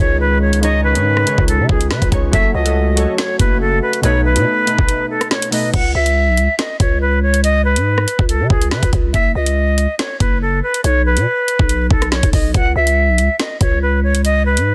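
A dry, dense and heavily limited mix opens this cold, ominous drill cut in C# minor at 141 BPM with a half-time feel, where a reedy silver concert flute carries the melody throughout over a growling, buzzy 808-style bass, while glassy chorused digital keys and a mellow French horn section in the background hold the first 5.8 seconds before dropping away after a break at 4.9 seconds, and an overdriven drill kit with knocking kick, woody snare, bright hats, rim clicks and crash enters at 0.5 seconds up front.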